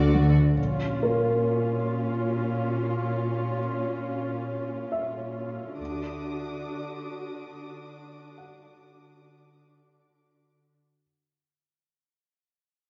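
Cinematic and mysterious, this brief excerpt drifts in free time with an eerie, unsettled air, cut from a longer piece and fading out from 0.6 seconds onward. A dark viola section carries the accompaniment throughout, its bowed lines lush with vibrato and portamento, while an up-front cello section holds the bass with soft attacks and an intimate, close sound. A distant double bass section joins the low end only briefly, at the opening and again around 5.8 seconds, and a rich, focused violin section floats high above with a smooth top from 5.8 seconds. A warm, present baby grand piano threads through the whole passage as texture. The harmony moves from D to A#m and back to D at 5.8 seconds, all set in a moderate scoring-stage reverb with a softened, rounded top end.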